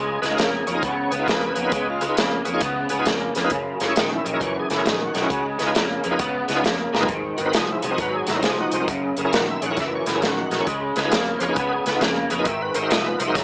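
A swinging 4/4 shuffle at 134 BPM drives this swaggering, rollicking electric blues in Db mixolydian, cut from a longer piece, with a twangy, slightly broken-up guitar riff up front and a round, foam-muted bass underneath. A bright, shouting tonewheel organ with key click, overdrive, chorus vibrato and slow rotary speaker provides the accompaniment, while a gritty, saturated breakbeat kit enters at 0.2 seconds and throws in a fill at 6.9 seconds. The mix has a moderate studio reverb and a small-speaker sound, with the chords moving through Db7, Gb7 and Ab7.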